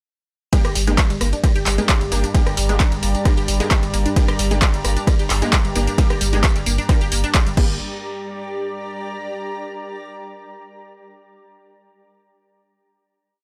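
Driving peak-time techno with a relentless, intense mood, launching straight into a drop at 0.5 s where an up-front, punchy four-on-the-floor electronic kick and a tape-warm analog drum machine carrying hats, claps, rim, ride, tambourine and crash drive things forward over a round sine sub bass with overdrive rumbling between the kicks. In the background, a squelchy, resonant blip pluck repeats an 8-step sequence through phaser, 12-bit sampler grit and analog delay, while aggressive, detuned rave stabs fire syncopated chord hits with chorus and tape echo, and a warbling analog drone with pulse-width modulation hums beneath, every one of these synth parts pumping against the kick. A blurred, cloudy granular pad with slowly shifting chords enters at 1.4 s and rings on alone as the final note until 9.6 s, all captured in a dry, gritty hardware sound.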